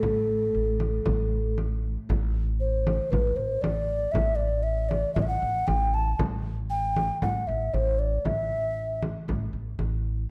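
A straight 4/4 pulse at 117 BPM drives this stately, passionate Arabic maqam piece in A maqam rast, cut from a longer work and tuned to A4 = 436 Hz, where a deep, large frame drum played with hard hands sits close and up front beside a woody, thumpy pizzicato upright bass on gut strings holding A1. A breathy, hollow clay alto ocarina with a straight tone and crisp attack carries the melody between A4 and A5 until 9.0 s, while a single bowed, dark cello drones on A2 with expressive vibrato and portamento only until 2.1 s. A moderate recital hall reverb gives the ensemble a natural sense of space.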